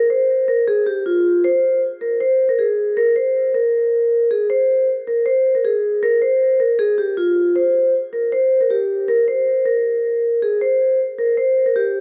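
This hip hop excerpt has an eerie, dark mood, moving at 157 BPM in 4/4 with a half-time feel. A solo vibraphone, played with medium mallets and the motor off, carries the whole 12 seconds, staying within a narrow span from F4 to C5. Its tone is metallic and ringing, yet set in a boxy small room and placed up front, softened by a low-pass filter and trailed by tape echo. A filter sweep shapes the vibraphone through the brief opening up to 1.4 seconds, after which the longer main passage runs on to the end. Light reverb and a dark production give the sound a shadowy, intimate character.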